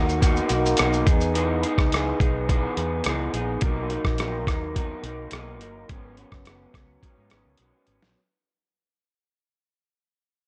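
Indie bedroom pop at 106 BPM with a sunny, dreamy mood, this short cut fades out across its full length, as a slightly broken-up electric guitar, soaked in lush chorus and vibrato, sits up front picking through Bmaj7, Emaj7 and G#m11. Beneath it, a foam-muted fingered bass gives round, punchy low notes with transformer saturation, while a pitched-down, muffled sampler-style kit of thumpy kick, rim click, hi-hat, shaker and snare carries 12-bit grit and tape warmth. The whole recording feels dry and gritty under a digital ambience, and a drum fill arrives at 7.6 seconds.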